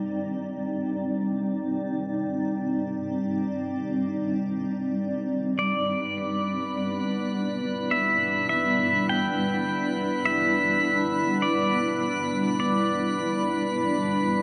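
Ambient, serene and melancholic at a slow 51 BPM in E minor, this excerpt opens on a dark, cloudy granular pad that sustains a blurred Cmadd9 chord up front, then moves to Em7 at 5.6 seconds as a clean electric pedal steel guitar enters with a fingerpicked slide melody in volume swells through delay, joined at 6.1 seconds by a bright, glassy texture of drifting overtones with chorus, all within a huge, wet reverberant space.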